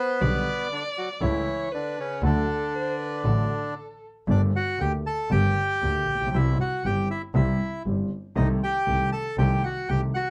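The rhythm moves in a rubato 4/4, giving this passionate, melancholic tango fragment a pulse that breathes rather than marches. A reedy bandoneon carries the melody up front, its tone boxy, as if heard in a small room. At the start, a dark bowed violin sings a second line with vibrato and portamento, expressive and smooth at the top, until it drops out at 4.0 s. Beneath them, a concert grand piano supplies warm accompaniment with deep bass, while a clear bowed double bass holds the low end with smooth, even vibrato. The harmony settles into G harmonic minor around 4.3 s, and the whole is set in a wet club reverb with a dark, warm production.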